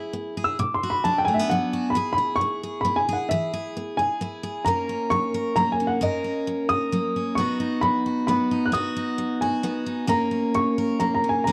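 Dry and close, this recording has the intimate, little-reverb feel of a 1970s studio session, with both instruments sitting up front. It is a down-home, nostalgic country piece in three, heard as a short cut from a longer performance. A dark upright piano carries the melody high in its range, its tone mellow and woody, and it opens with a brief solo passage over E and Bm in the first 1.9 seconds. A picked steel-string dreadnought guitar supplies the accompaniment throughout, full-bodied and bright with the sparkle of fresh strings. From 1.9 seconds the harmony moves through E, F#, B and back to F#, giving the tune an easy, homespun pull.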